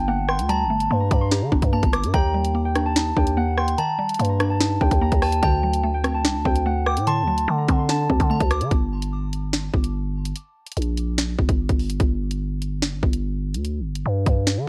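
A growling, buzzy, saturated 808-style bass sits up front in this menacing, tense drill excerpt at 146 BPM with a half-time feel, beside an up-front electronic kit of hard-clipped kick, sharp snare, rim clicks and bright hats. Above them a thumb-plucked concert harp rings out a filtered melody, backed by a woody, round FM mallet pluck treated with chorus and phaser and a tinkling tine bell with delay, moving through Gmadd9, Ebmaj7 and D7. The whole mix carries a worn, warbling cassette-tape ambience, and at 8.7 s the pluck and bell stop, the harp rings until 9.3 s, and the bass and drums carry the break.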